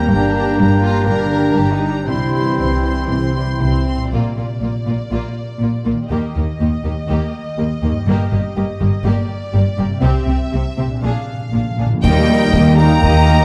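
A heroic, adventurous film-score cue at 121 BPM opens with strings, winds, brass and harp: a clear studio violin section carries the soaring vibrato melody over lush violas, a focused chamber violin second line, rich cellos and double basses, and a ringing, thumb-plucked harp arpeggiating in the background. Clarinet, solo oboe, pure-toned flute, mellow distant French horns and bright trombones add lines and sustained chords before dropping out at 3.8 seconds. A very quiet timpani fill at 11.0 seconds leads to 12.0 seconds, where flute, horns and trombones return and snare, bright clash cymbals and bass drum join, with the clarinet re-entering at 13.0 seconds, all within a dark, moderately reverberant scoring-stage sound.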